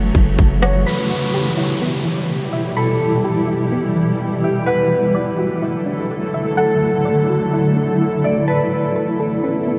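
Melancholic and spacious, this excerpt of atmospheric cloud-rap moves at 126 BPM in a half-time feel, set in E dorian and drifting through F#m7, Em, Dadd9 and Aadd9. A granular cloud pad holds blurred, detuned chords up front across the full 9.8 seconds, its slow attack and long release pumping against a sidechain inside its own built-in reverb. A soft, round pluck traces dark arpeggios alongside it, thickened with chorus and delay. A deep sine 808-style bass and a trap kit with a hard-clipped kick, crisp hats and rim click appear only briefly at the opening, the bass fading by 0.8 seconds. From 0.6 seconds a mellow, clean electric guitar carries a fingered melody drenched in lush chorus and delay, while an electronic downlifter sweeps through the first half of the passage. Everything sits in a dreamy, reverb-soaked space with a huge ambient tail of 7.3 seconds.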